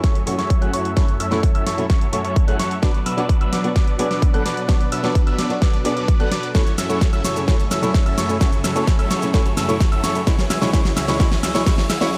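A bright, euphoric wash of sidechain-pumped synths under light reverb opens this short cut from a festival progressive house track in F# minor, moving at 129 BPM in a straight 4/4 as a build-up with a drum fill and a filter sweep on the supersaw runs through its full 12 seconds. A huge, detuned supersaw lead carries the riff through a phaser, low-pass filter and dub echo, while a lush, thick unison pad holds sustained chords in the background with chorus and a gritty vintage sampler edge. High above, a brilliant grand piano spins arpeggios with long sustain, and from 0.3 seconds a dark, woody, boxy fingerpicked acoustic guitar on old strings adds accompaniment through its own pumping and echo. A punchy, up-front electronic kick leads the drums, joined by a big-room kit with a huge snare, hi-hat and shaker. The chords move from F#m7 to Bm and back before landing on C#m, as a very quiet riser enters at 9.5 seconds to push the build toward its peak.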